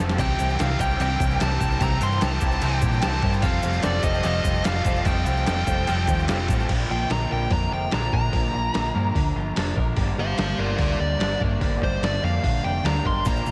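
Cool and restless, this indie rock passage, cut from a longer piece, drives forward in a straight 4/4 and sits in a dreamy mix soaked in huge ambient reverb. A gritty, pitched-down boom bap sampler-style kit opens with a drum fill and stays up front, its thumpy kick and medium-tuned snare joined by hi-hat and crash, while a round, punchy fingered bass anchors the low end. Two guitars play riffs in the background: a lo-fi garage guitar with overdrive, ensemble chorus and tape echo, and a bright, twangy twelve-string awash in lush chorus. A dark, overdriven lead guitar with tape echo carries the melody up front, moving into a solo at 6.7 seconds as the harmony shifts from C7 through Fadd9 to Bb. In the background, a ringing, bell-like glockenspiel struck with hard plastic mallets adds a second line until 6.2 seconds, and a grainy tube shaker plays until 6.6 seconds, returning briefly at the very end.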